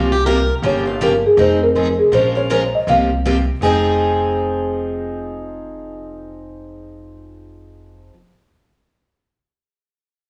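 This short cut from a longer piece sounds like a home cassette recording, with a moderate spring reverb and a small room giving it a homely, slightly worn character. It is bittersweet, swinging jazz manouche in F minor at 160 BPM, with a loping swing on the eighth notes. Two picked steel-string acoustic guitars play accompaniment together: one a full-bodied dreadnought, the other a boxier parlour, both with fresh strings and audible finger squeak. Beneath them a pizzicato upright bass with gut strings adds a thumpy, woody low end, moving through changes such as C7sus4, Gm7b5, Fm7 and Bbm7. A buzzing marimba played with soft mallets carries the melody from 0.7 s, dry, round and mellow, sitting up front. A bright, plugged-in swing-style acoustic guitar plays a second line, briefly at the start and then again from 3.6 s as the second section begins.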